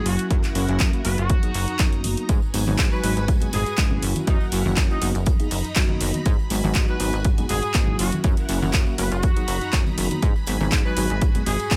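A distant horn section with light vibrato carries the melody from the start of this funky, nostalgic filtered disco house excerpt, over a mellow tine electric piano coloured by phaser and vintage 12-bit sampler grit, and lush, chorused string machine chords sitting in the background. A plucky sawtooth analog bass and a punchy drum machine with handclaps and hi-hat join almost at once, an up-front electronic kick arrives at 0.3 seconds, and bright tambourine and congas played with soft hands enter at 2.3 seconds. Sidechain pumping breathes through every part but the kick on a swung groove, and the mix is dry, with little reverb.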